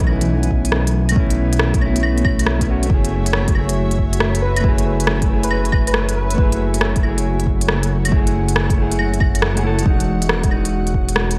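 Future garage at 138 BPM in F# dorian, this rainy, melancholic excerpt from a longer piece sways on a heavy 16th-note swing. A deep electronic kick anchors the groove, while an organic-sounding electronic kit adds crisp hi-hats, claves and rim clicks with a tape-warmed, large-room character. Underneath, a dark, detuned saw bass rumbles up front with a saturated, beating tone, and a clean, fingered electric guitar and a blurred, evolving granular pad both pump with sidechain compression, the guitar trailing tape echo and the pad washed in its own reverb. The chords move from B7sus4 to F#m7 and settle on Emaj7 near 9.9 seconds. Between 4.4 and 6.6 seconds, a soft, airy lead holds a single B4 with vibrato, chorus and tape echo. Vinyl crackle and light reverb lend the recording a hazy, worn surface.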